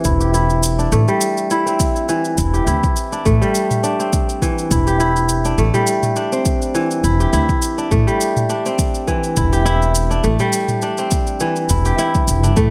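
Hypnotic and earthy, this organic downtempo excerpt sits on a lightly swung groove, with a bright, fingerpicked kora ringing up front in arpeggios over an Am7 chord, shaped by a low-pass filter sweep and analog delay throughout, while produced electronic shaker and toms tick along beneath it from the start. A woody, growly pizzicato upright bass on steel strings pumps under sidechain from 0.1 seconds, entering together with a deep, tape-tinged electronic kick. A moderate plate reverb soaks the mix in a dreamy haze.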